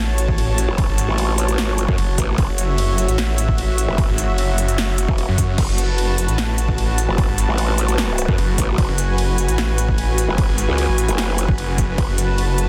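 Heavy wobble dubstep in F# minor at 150 BPM with a half-time feel, this chaotic, menacing clip from a longer piece sits on a single F#m chord, where a lush, detuned supersaw pad holds sustained chords under sidechain pumping and a low-pass filter. A snarling, distorted sawtooth bass with a moving notch sits up front from the start, joined at 0.7 seconds by a bright, formant-filtered growl bass with chorus and overdrive that wobbles and growls. The drums arrive almost at once: an overdriven, punchy electronic kick and a layered dance kit with a punchy snare, crisp hats, ride and crashes, re-recorded in a large room, all set in digital ambience under a dense, heavily limited modern master.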